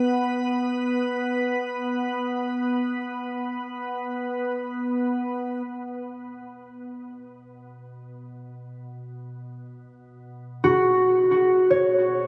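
Peaceful and weightless, this ambient passage, cut from a longer piece, rests on a calm, organ-like sine drone, sustained with slow attack and long release, coloured by ensemble chorus, built-in reverb and phaser, and fading in from 5.7 seconds as a B5 chord settles. At 10.6 seconds an acoustic concert harp enters up front, thumb-plucked arpeggios ringing through tape echo. A huge ambient reverb with an 8.8-second tail, alongside a small room reverb, bathes the sound in a floating haze.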